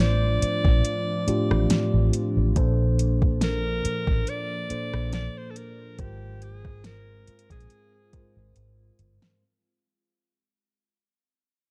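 A clear, jazz-style alto saxophone carries the solo melody with a touch of delay, singing until 8.3 seconds in this longing, late-night contemporary R&B excerpt. A mellow tine electric piano plays clean accompaniment, while a glassy FM pad with slow attack, ensemble chorus, built-in reverb and sidechain pumping sits ethereal and dark in the background. Up front, a vintage muted fingered electric bass sounds round, punchy and foam-muted, beside a smooth electronic drum kit with a soft kick, fat snare, metallic hats, rim clicks and overdrive. The groove sways with a gentle 16th-note swing in 4/4, moving through Dm7/A, Bbmaj7 and Ab6 with the tuning set to A4 = 436 Hz. The whole passage fades out, and a drum fill arrives at 8.6 seconds in a dark, dry production.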